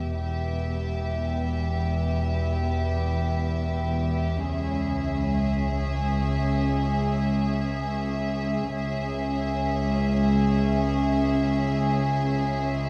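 A sul tasto violin section carries a warm, intimate melody on a high E in this mysterious, tense suspense film-score excerpt in free time. A second, floating and distant violin line, a dark viola section and, further back, cello and double bass sections all bow sul tasto with soft attacks, while an eerie, nasal, metallic drone with chorus hangs beneath them. The harmony shifts from E minor to C-sharp minor at 4.5 seconds, and a concert-hall reverb bathes the strings.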